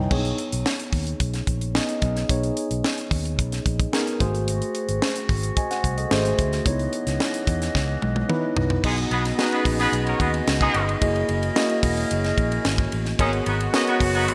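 A mellow tine electric piano with subtle chorus and a punchy fingered electric bass open this bittersweet, nocturnal slice of polished 1980s jazz-funk pop, joined at once by a tight, dry funk drum kit with bright cymbals and a high-tuned snare, before a dark, distant woodwind section adds soft sustained chords from 4.5 seconds and, after a drum fill, a clear horn section with octave doubling enters at 8.8 seconds over lush hall reverb and glossy digital sheen.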